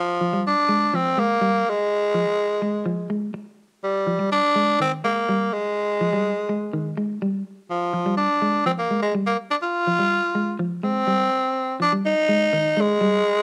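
A raspy, gritty tenor saxophone opens this funky, hypnotic afrobeat excerpt at 124 BPM in F dorian, playing an up-front, punchy pop-style solo melody with vibrato, while a dark, clean semi-hollow electric guitar enters at 0.2 s with fingered arpeggios bathed in spring reverb, both carrying the character of a home cassette recording in a moderate room as the harmony moves from Bb7 through Fm9 and Fmadd9 before shifting into a new section at 11.1 s.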